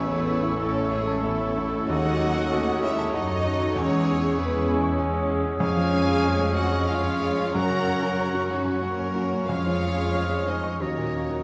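This classical excerpt moves in a passionate, lyrical 3/4 at 95 BPM, its uneven beats pulled about with rubato as the harmony shifts from C# minor to Db major at 5.6 s. A clear, intimate baby grand piano leads the melody with its action noise audible, joined by a soft-attacked, sul tasto violin section with light vibrato sitting in the background. Around them, a clear oboe, a rich, focused second violin section, an airy silver flute heard at a distance, and a roomy, distant clarinet weave second lines. A smooth-topped viola section and a very quiet bassoon supply accompaniment, while a very quiet French horn section holds sustained chords. Underneath, a dark, close cello section and a lush, expressive symphonic double bass section carry the bass, and the whole ensemble sits in a wet scoring-stage reverb.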